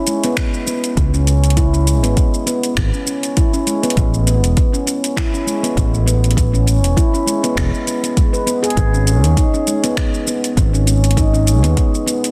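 A ringing stainless-steel handpan, struck with the fingertips and set up front in a boxy small room, opens this earthy, hypnotic organic downtempo excerpt at 0.0 seconds, spinning meditative arpeggios between G#3 and B4 through a touch of delay. In C# minor at 100 BPM in 4/4, with a 55% swing on the sixteenths, the harmony moves from C#7(no3) to Aadd9 and settles on G#m at 8.8 seconds. A layered, produced deep house kit of finger snaps, metallic hi-hats and shaker sits low in the mix, with soft clipping on the snare, while a deep, tape-warm electronic kick enters at 0.4 seconds. A direct, up-front fretless electric bass joins at 1.0 seconds, moving between E1 and D#2 with sidechain pumping. Light reverb and a dense, heavily limited modern master frame the whole groove.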